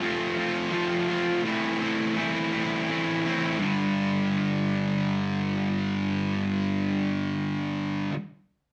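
A live room sound with moderate studio reverb frames this brooding, dark rock excerpt in 6/8, cut from a longer piece. A single electric guitar, thick with fuzz distortion, double-tracked and up front, plays solo with a bright, picked edge across the whole 8.1 seconds. It moves from F to A minor before shifting at 3.6 seconds to a G5 power chord.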